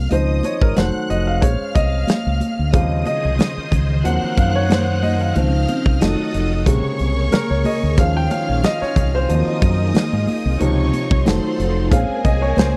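A short cut from a lush 1970s-style soul piece in Bb minor opens at once with a baby grand piano taking the solo over a soft-attack bowed string section, playing sul tasto with vibrato, and a dark, round fingered electric bass. A modern studio drum kit with a punchy kick and medium-tuned snare, plus bright, high-tuned congas tucked into the background, join almost immediately. Together they set a 92 BPM groove in 4/4 with a light swing on the sixteenths. At 2.7 seconds a vintage string machine adds shimmering sawtooth violin chords, colored by phaser and ensemble chorus. The harmony moves through rich extended chords such as Dbmaj9, F7b9, Bbm9 and Eb13sus4, giving the cinematic, bittersweet mood its ache. The sound is dry and close, with the piano, bass and drums placed up front.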